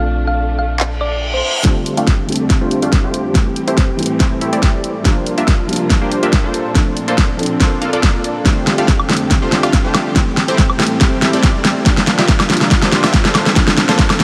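A swung, half-time 4/4 future bass groove at 141 BPM in F major opens this lush, bright excerpt, as a tine-like FM thumb-piano pluck, a boomy sine 808 bass, a felt-muted upright piano with audible action noise, and dark, vibrato-rich strings in the background all pump to the sidechain, while a pop kit with a fat snare, handclaps, woodblock and hi-hat comes in up front at 0.8 seconds. After a very quiet reverse cymbal and riser, the build-up begins at 1.6 seconds as a punchy kick and an airy, detuned supersaw stab arrive together, the stab carrying cassette grit and tape echo while filter sweeps move through both the stab and the strings. Chords cycle through Bbmaj9, F69, Am7 and C9sus4 inside a moderate hall reverb, and the riser returns near the end.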